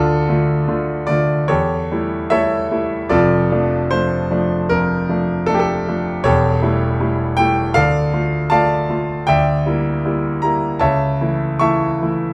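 A passionate, stormy romantic character piece for solo piano, cut from a longer work, moves in a rubato 4/4 at 71-80 BPM, its clear concert grand ranging from a deep bass at E1 up to C#6 over shifting D minor and A7 chords, captured up front by close, detailed microphones in a moderate recital hall reverb.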